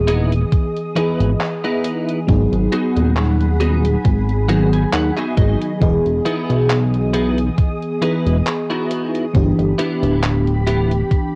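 Vaporwave with a dreamy, faded mood, built on a lush, dark FM electric piano with a soft pad layer carrying tremolo, chorus, delay and cassette-tape colour, under a silky string machine holding sustained chords. A glossy chorused synth bass and a thumpy, up-front electronic kick anchor the groove alongside a tape-softened, detuned 8-bit drum machine playing handclaps and hi-hat. A clean, picked electric guitar riff, roughened by 12-bit sampler grit and delay, slips in a fill from 4.0 to 5.8 seconds as the chords drift from Emaj7 to G#m7 and back before settling on G6.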